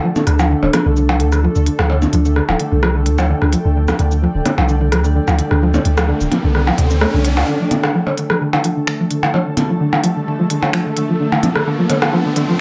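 A wet studio reverb wraps this short cut from a longer minimal techno track, giving it a hypnotic, cool air with a lightly swung groove. A twangy, nasal resonator pluck carries the riff with chorus and dub echo, while an ethereal, airy pad and a pulsing, tempo-synced gated texture sit behind it, the latter tucked in the background. An overdriven drum kit of finger snaps, smooth hi-hats and shaker joins alongside up-front, tape-warm electronic blips and a rim click, and a deep, punchy sine sub bass holds the low end until 7.4 s. An electronic riser enters at 5.2 s. From 7.5 s the track builds up while a filter sweep moves across the pluck.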